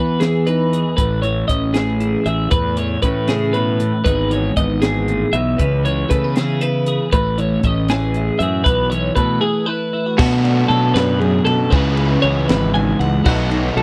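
Math rock and midwest emo in 6/8, wistful yet bright: two bright, twangy twelve-string electric guitars play clean and compressed, one up front with chordal accompaniment through analog chorus and the other picking high arpeggios, over an up-front, growly fuzz bass and a dark, smooth compact cocktail drum kit with a high-tuned snare and punchy kick. The harmony moves through major-seventh colours to a short break at 9.4 seconds, and at 10.2 seconds a double-tracked, crunchy overdriven guitar riff enters as the chords shift toward Bm7 and C#m7. The sound is dry and close, in a 1970s studio style, in this section cut from a longer piece.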